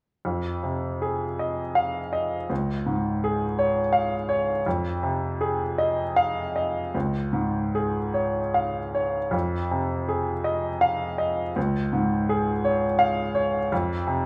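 A bright baby grand piano opens at 0.2 s and carries this short, wistful excerpt of neoclassical minimalist piano on its own until 14.3 s. The playing moves in a loose, rubato six-eight, unhurried and intimate. The harmony rocks between Fm7 and Db chords, settling on an F5 at the close. The instrument sits up front, with a brilliant, natural tone and long sustain across a span from Db2 to F5. A moderate reverb from a large studio room surrounds the performance, giving it the feel of a live take in one space.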